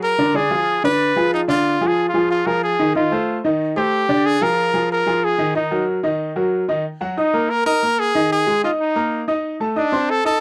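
Latin music with a passionate, danceable mood, this excerpt sets a punchy, close-miked trumpet melody with light vibrato in a pop style up front, over an open, clear baby grand piano accompaniment, both carrying a cassette-tape grain in a small booth-like room, while diminished and dominant seventh chords move to E-flat minor before a new section arrives at 6.8 seconds.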